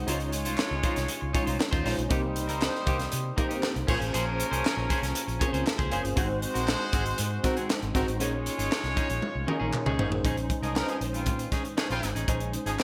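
Bright 1980s-style digital production with light reverb frames this slick, urban jazz-funk pop excerpt in Bb minor at 118 BPM, driven by an up-front fusion drum kit with a high-tuned snare, tight kick and gated reverb, and a dark, round, foam-muted fingered bass. A worn, slightly out-of-tune tine electric piano with ensemble chorus provides accompaniment over Dbmaj9, Cm7, Bbm9, Ab7 and Bbm11 while a clean, picked semi-hollow guitar with subtle chorus plays a bright riff, a distant, roomy horn section adds a tight second line with light vibrato, and very quiet, crisp handclaps join at 0.6 seconds. A drum fill at 9.2 seconds leads into a new section at 10.2 seconds.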